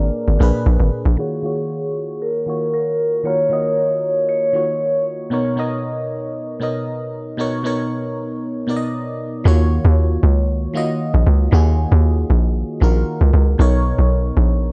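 A hollow, bouncy log drum bass sits up front in this deep, hypnotic amapiano excerpt in Eb minor at 116 BPM, dropping out after 1.2 seconds while a filter sweep fills the middle and returning at 9.5 seconds, beneath a glassy, bell-like FM electric piano with chorus and phaser that carries the chords throughout and a metallic, ringing vibraphone melody with slow motor vibrato and tape echo that ends at 5.0 seconds, all captured in a dry, gritty small room with transformer saturation.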